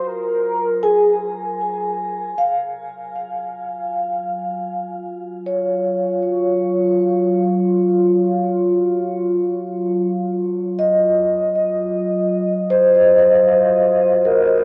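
In free time and tuned to A4 = 441 Hz, this warm, serene ambient excerpt over a Dbadd9 harmony opens with a velvety, detuned synth lead carrying a brief melody through chorus, shimmer reverb and tape echo until 1.6 s, while a mellow vibraphone played with soft mallets rings out metallic arpeggios through shimmer reverb and tape echo, and an evolving sawtooth analog drone with pulse-width modulation and a moving notch sustains beneath with chorus, the whole piece captured as a home cassette recording in a short, wet booth ambience.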